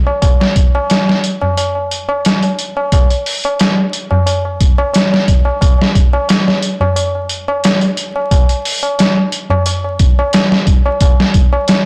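Dark and cinematic, this short trip hop excerpt moves at 89 BPM in a straight 4/4 feel. A high-tuned acoustic tabla opens the excerpt at 0.1 seconds, close and dry with a short ring. A sampler-style drum kit follows at 0.2 seconds to carry the groove, its thumpy kick, medium-tuned snare and hi-hat sounding compressed, pitched down and gritty, with a tape-warm character and the air of a small room, placed up front. The tabla sits equally forward beside the kit, though mixed lower. The whole recording is blown-out and overdriven, dusted with vinyl crackle and a light reverb. It stays in a single section until it cuts off at 11.9 seconds.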